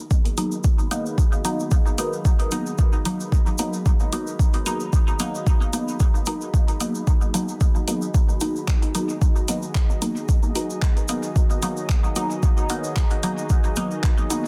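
An overdriven electronic kick sits up front with a deep, layered punch, driving this hypnotic dub techno excerpt in 4/4 with a light swing on the 16ths, joined by an overdriven deep house kit of handclaps and hi-hat carrying dub echo and a grainy, vintage cabasa. A muted, detuned sawtooth chord stab with a filter pluck, phaser and dub echo sounds throughout, while a moody, dark ambient pad with a sub octave, chorus and slow attack sustains a G#m7 chord above it, both pumping from sidechain compression. The mix is dense and heavily limited, set in a digital ambience.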